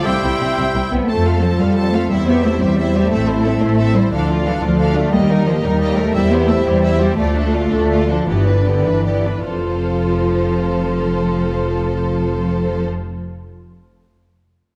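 A heroic adventure film score in 12/8, triumphant and soaring, moving at roughly 94-120 BPM in F lydian and taken from a longer piece. A lush, close violin section carries the melody from A4 to A5 with focused vibrato, while a second violin section sits in the background on a supporting line. Flute, oboe and clarinet sound only in the opening 0.9 seconds, the pure, metal-toned flute high at E6 beside a close-miked oboe and a soft-attack clarinet. A distant viola section fills in the accompaniment, a French horn section holds smooth-topped sustained chords, and a dark, woody cello section joins an even, up-front double bass section on the low end from 0.1 seconds. The harmony travels from C through F, Am, Dm and a striking Eb before reaching G and settling on F at 9.5 seconds, with the tempo slowing between 5.8 and 9.5 seconds. A moderate scoring-stage reverb gives the orchestra a spacious sound.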